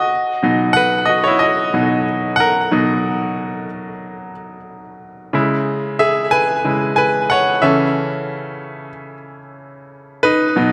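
A bright, up-front baby grand piano with audible action noise, a touch of delay and a moderate plate reverb carries this anthemic, uplifting pop excerpt alone at 92 BPM in B major, its lightly swung sixteenths moving through B, C#m and A/C# across roughly 10.7 seconds.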